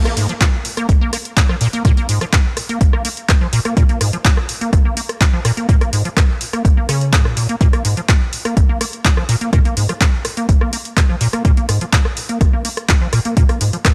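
The recording has a dry, gritty hardware character set in a digital ambience, and this short passage is cut from a longer piece of driving, raw acid house in straight 4/4. A squelchy, hollow square-wave acid bass carries the riff from 0.1 s, its resonant filter pluck giving each note a fast attack and a decaying tail, thickened by tube saturation, ensemble chorus and tape echo. Alongside it from 0.1 s, a punchy analog drum machine supplies handclaps, hi-hat and rim click, roughened with overdrive and placed in studio reverb. An overdriven electronic kick drum joins at 0.4 s and sits loudest and up front in the mix, dry and punchy with its own overdrive and studio reverb. The bass also sits up front, ranging from Bb1 to Bb3 and staying in a single section until the cut at 13.9 s.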